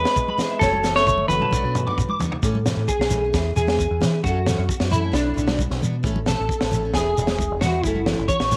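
A twangy, clean electric guitar melody over a faint alto saxophone second line opens this carefree highlife guitar band cut at 133 BPM in A major, alongside a round, dark fingered bass and a full-bodied acoustic guitar picking quietly in the background. A bright, slightly broken-up electric guitar soon joins, spinning arpeggios through chorus and tape echo, while a gritty, saturated breakbeat kit with a punchy kick plays a drum fill from 0.6 to 2.4 seconds amid grainy shekere and soft-handed congas under light reverb.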